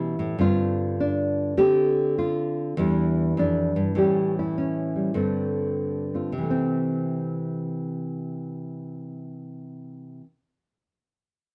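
Lightly reverberant, this relaxed, warm solo jazz excerpt features an up-front nylon-string guitar with a dark, thumb-plucked, deep classical tone, moving on swung eighths through G9sus4, Dm7, Em7 and A7 before reaching a C6 chord at 6.3 s.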